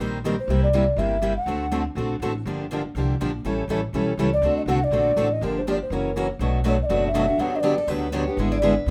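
Bittersweet and fiery, this brief excerpt of acoustic string swing in G minor races at 243 BPM with a swung feel, as two picked steel-string acoustic guitars, one warm and one bright, carry the accompaniment over a woody, growly pizzicato upright bass up front, while a mellow, hollow alto ocarina with airy vibrato sings the melody from a distance in phrases at 0.4 and 4.3 seconds, and a third guitar with fresh strings and audible finger squeak adds a second line at 7.8 seconds, all set in moderate studio reverb.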